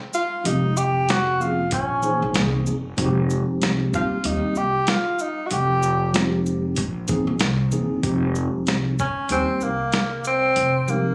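Captured on a phone in a club-like room with a touch of reverb and compression, this nocturnal, mellow jazz-hop excerpt in F minor moves at 95 BPM with a swung sixteenth-note feel. Up front, a breathy tenor saxophone with vibrato, subtone and a smooth top takes a jazz-style solo through the first 8 seconds. Beneath it, a gritty, compressed sampler-style drum kit with a thumpy kick, medium-tuned snare, hi-hat and shaker sits alongside a clean tine electric piano playing through its built-in speakers and a woody, dark pizzicato upright bass on gut strings, cycling through chords like Fm9, Bbm9 and C7alt.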